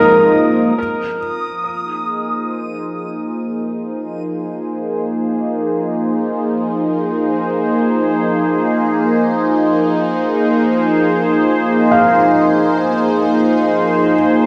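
In free time, this melancholic, reflective ambient fragment, cut from a longer piece, begins with a reversed, granular triangle texture that swells dreamily for only the first 0.8 seconds, while an up-front, detuned sawtooth analog pad holds chorused chords that fade in from 0.8 seconds and a soft, intimate felt-muted upright piano traces mellow arpeggios through analog delay, the echo-heavy mix sitting in a wet chamber reverb.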